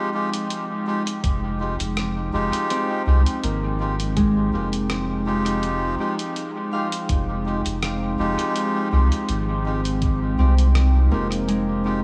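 This deep and spacious ambient dub piece at 82 BPM in F minor is cut from a longer work and rests on a single Fm9 chord, with a gently swung 16th-note feel. It opens at 0.0 seconds with a warbling, nostalgic pad holding sustained chords through chorus and its own reverb, a bright, ringing concert harp playing arpeggios through tape echo, and a reedy, breathy melodica adding stabs that trail off into dub echo. At 0.3 seconds a muffled, pitched-down sampler-style kit enters with hi-hat and rim click, treated with studio reverb and dub echo. At 1.2 seconds a round, sine-based sub bass arrives up front with a touch of tube saturation, joined by a compressed, thumpy electronic kick sitting far back in reverb. The pad's detuned, vintage haze and the harp's acoustic shimmer float above the low end, and the whole mix sits in a light reverb.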